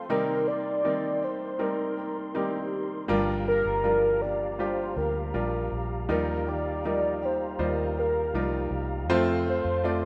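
A velvety, detuned synth lead with chorus carries the tender melody from 0.1 seconds, set over a brilliant, woody upright piano that sits up front in this heartfelt pop excerpt at 80 BPM in a straight 4/4. A flute-like tonewheel organ holds sustained chords with chorus vibrato and key click through a stopped rotary speaker, while a fingerpicked jumbo steel-string guitar plays arpeggios in the background. A round, punchy, foam-muted electric bass enters at 3.1 seconds as the chords move from Cm7 through Gm7 and Ebadd9 to F, all in a lightly reverberant, rough home-demo mix.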